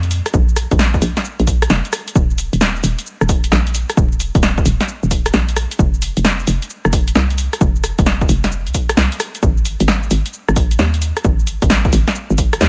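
Bouncy and sunny, this short cut from a longer UK garage track rides a swung two-step groove at 132 BPM in Ab major. A hollow, knocking FM bass with a fast attack and mellow decay bobs along under a punchy, up-front analog drum machine of hi-hat, rim click, shaker and snare, while a tape-warm electronic kick enters at 0.3 seconds. Vinyl crackle and lossy compression artefacts give the sound a digital, lived-in grain.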